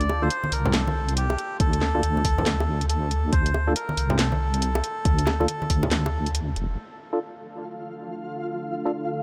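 Brooding and cavernous, this deep dubstep fragment moves at 139 BPM in D minor with a half-time, swung feel. A reedy, breathy melodica carries the melody through dub echo, while a deep wobbling bass with chorus sits up front beneath it until about 6.8 seconds. A garage drum kit supplies a cracking snare, handclaps and warm hats, joined by ringing, close and dry bongos and congas played with hard hands, and an electronic kick drum with a tape-warm thump arrives at 1.6 seconds. A hollow, mellow organ stab with subtle chorus and dub echo lingers in the background and carries on into the later section. From 6.8 seconds the music settles on a D minor chord, and shortly after, a dark analog pad with chorus and phaser swells in slowly alongside a grainy, flickering texture with its own reverb, all within a light digital ambience.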